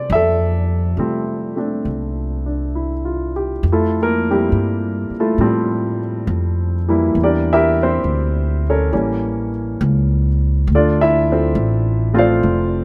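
Jazz ballad with a romantic, tender mood and a swung feel, where a warm baby grand piano with natural, short-sustained tone plays accompaniment over a woody, thumpy pizzicato upright bass, both up front in light reverb as the harmony lingers on Fmaj9 before moving through Em7b5 and A7b9 to Dm7 in this fragment of a longer piece.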